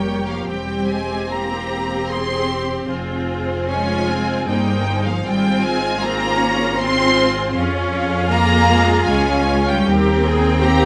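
A slow, tender F minor movement for string orchestra in 3/4 at 77 BPM opens with the full ensemble bowing together: the first violins carry a lush, focused melody up front, and a second violin section adds a smooth-topped line beneath. Clear, intense violas fill out the accompaniment, while rich cellos and double basses anchor the bass with an even vibrato, and the tempo flexes in a gentle rubato. Moderate recital hall reverb surrounds this passage cut from a longer romantic piece, as the harmony moves from C7/E through Fm and Db/F to Eb.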